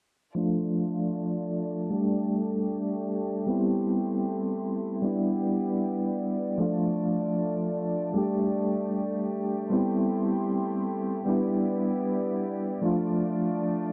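A moderate spring reverb and a low-pass filter shade this brooding, dark trip hop passage, which is cut from a longer piece and sways with a swung sixteenth-note feel. A bell-like, up-front tine electric piano carries the accompaniment throughout, coloured by tremolo, gritty vintage 12-bit sampler texture, tape echo and a filter sweep, as it cycles through Dm, Gsus2, Am7 and Em7. Alongside it, a clear, earthy studio violin section holds bowed sustained chords with light vibrato.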